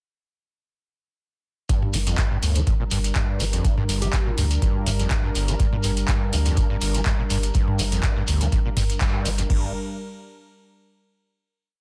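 A trippy, raw acid house groove opens at 1.7 s with a deep, tape-warm four-on-the-floor kick, a booming analog drum machine with metallic hats, handclaps, toms and crash, and grainy hand-played shekere sixteenths, alongside a squelchy, gritty, resonant sawtooth acid line drifting against the bar and a smooth, detuned sustained pad, joined at 1.9 s by a round sine sub bass (both sub and pad pumping with sidechain), while a gentle keys-like FM lead touches a single note in the background at 4.0 s before a band accent at 9.0 s and a final chord close the piece in a dry, dense, heavily limited mix.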